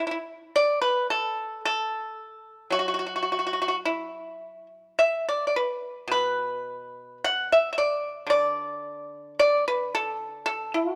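The sound is close and detailed, with light reverb around a dry, percussive pipa placed up front. This is a short cut from a longer piece of Chinese traditional music for solo plucked strings, serene and flowing in mood. The pipa plays alone across the full 11 seconds, picked with fingerpicks and spanning a range from B2 to F#5. The tempo sits around 55 BPM in 2/4, though the playing is rubato and breathes freely rather than keeping strict time. Its acoustic tone carries a warm body beneath the crisp attack of each plucked note.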